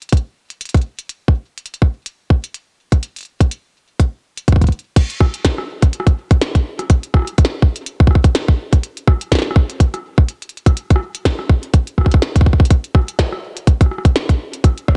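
A tight electronic kick drum sits up front and carries this melancholic, eerie IDM piece, entering at 0.1 s and running until 14.9 s. It moves at 124 BPM in 4/4, with a 56% swing on the sixteenths giving the pulse a slightly loping feel. Beneath it, a glitchy electronic drum kit sits much lower in the mix, with a tiny snare, clicky hi-hats, rim clicks and crash cymbal. Both kit and kick were re-recorded in a small room, and the dark production keeps reverb to a minimum for a close, dry sound. The music shifts into a new section at 5.0 s, and the passage is cut from a longer piece.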